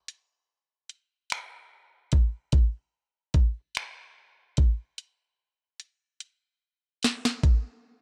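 Intimate and tender, this short R&B fragment cut from a longer piece moves at a slow 49 BPM in a straight 6/8, carried entirely by an up-front electronic drum kit of finger snaps, dark hats, a knocking kick and a sharp snare, coloured by vintage 12-bit sampler grit in a dry room, playing from 0.1 to 7.6 seconds and closing with a drum fill between 6.2 and 7.4 seconds.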